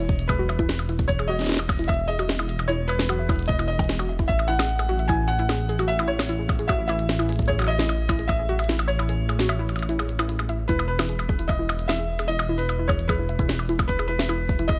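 Wistful and intricate, this IDM passage, cut from a longer piece, sets a soft, felt-muted upright piano melody over a bed of lo-fi electronics in a steady 4/4. The piano sounds mellow and intimate, with audible action noise under the thin felt, and its lines carry vintage 12-bit sampler grit and a delay. A warbling, dusty pluck spins arpeggios beneath it, its detuned triangle, saw and square tones decaying and colored by chorus, cassette tape character and tape echo. Down low, a dark detuned saw bass rumbles up front with a saturated, beating edge, while a deep electronic kick and a glitchy kit of tiny snare, clicky hats and percussion blips sit in a small room. The harmony moves from Emaj7 to Amaj7 at 4.3 seconds and settles on E at 10.7 seconds, and the kick briefly falls away from 9.1 seconds, leaving the glitchy kit and bass to carry the pulse.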